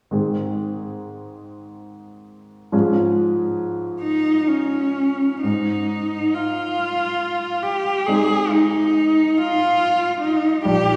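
Set in a wet concert hall that lends a long, distant glow, this tender, warm romantic duo in Ab major drifts with rubato at 40-48 BPM in 12/8, as a clear, naturally voiced baby grand with short sustain opens alone with up-front accompaniment before a rich, expressive solo cello enters at 4.0 s with soft-attacked bowed phrases, vibrato and portamento, sitting just above the piano in this brief fragment of a longer piece.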